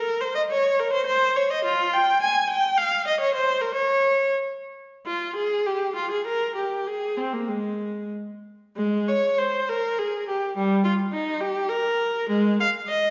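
Heard from further back in a wet, reverberant scoring stage, a single bowed viola with a rich, focused tone and vibrato plays a flowing, introspective baroque-style suite movement in a rubato triple metre, sitting up front in the sound, spanning G3 to Ab5, and moving into a new section at 8.8 seconds before this short cut from a longer piece ends at 13.1 seconds.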